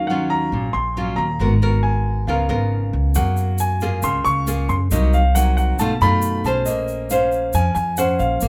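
In a moderate studio ambience, this smooth, melancholic bossa nova excerpt in Bb minor at 137 BPM pairs an intimate grand piano melody, rich with audible action noise, deep bass and long sustain, with a bright, fingerpicked nylon-string guitar and a woody pizzicato upright bass up front, while a grainy, close and dry egg shaker enters at 3.1 s over chords moving from Ebm9 through Gbmaj9 and B7#11 to Bbm9.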